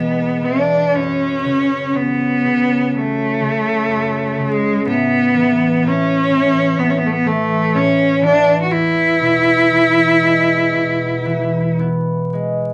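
Rubato and unhurried in 4/4 at roughly 53-64 BPM, this pastoral, nostalgic Celtic slow air in E mixolydian, cut from a longer piece, sets a rich, focused bowed cello melody with vibrato up front over ringing, fingerpicked concert harp accompaniment through an E, F#m, A and back to E progression, with the cello falling silent at 11.8 seconds as the harp carries on to 12.7 seconds, all heard in a moderate studio ambience veiled by vinyl crackle and a dulled top end.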